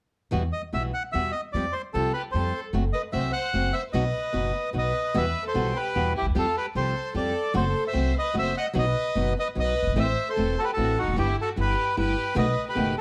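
A flamenco guitar, fingerpicked and bright, opens this passionate, melancholic tango together with a pizzicato upright bass whose woody, steel-strung tone sits up front. The bandoneon joins at 0.5 seconds to carry the melody, its reedy voice placed forward and lit by plate reverb. A violin section enters at 1.9 seconds as a second line, bowed with a gut-string, period-style sound, close and touched by slapback echo. Moving in 3/4 at 150 BPM with a rubato feel in E harmonic minor, the harmony circles through chords such as Emadd9, F#dim and B before turning to Am, Em/G and a closing B7. A moderate studio reverb holds the ensemble together in this excerpt cut from a longer piece.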